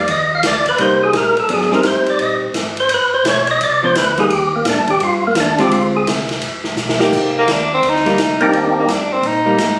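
Soul jazz organ trio in C minor at a brisk 170 BPM, swinging and bluesy with a late-night mood, cut from a longer piece. A percussive tonewheel organ carries the melody up front, fat and lightly overdriven through a slow rotary speaker and plate reverb, soloing until a drum fill at 6.8 seconds hands off to a growling tenor saxophone that enters at 7.4 seconds, raspy and gritty with vibrato. Underneath, a second tonewheel organ supplies a mellow, round bass line with key click and its own slow rotary, while a hollow-body jazz guitar adds a dark, clean picked accompaniment through changes such as Cm7, Abmaj7 and Dm7b5. An acoustic big-band drum kit swings with a punchy kick, medium-tuned snare, ride, hi-hat and crash. The room sound is a wet club reverb, heard as if captured on a phone in the room and then compressed.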